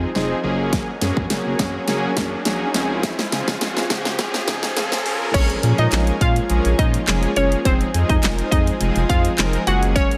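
A straight 4/4 pulse at 104 BPM drives this bittersweet, energetic dance-pop passage in Bb minor, cut from a longer piece. A build-up opens it, with a drum fill on the electronic, layered pop kit, a filter sweep, and a background riser that runs from 0.1 to 5.3 seconds over Gbadd9 and Dbmaj7 chords. The punchy kick and fat snare sit up front with hi-hat, handclaps and crash cymbal. Beneath them, a round analog bass with a deep, dark, wave-folded tone, a big, bold, detuned sawtooth polysynth and a soft, breathy pad with chorus in the background all pump with the sidechain. At 5.3 seconds the drop arrives on Bbm7 and Fm7, and a glassy wavetable pluck takes the melody, crystalline and evolving with a warbling vintage edge, chorus and digital delay. Light reverb and a digital ambience frame the whole mix.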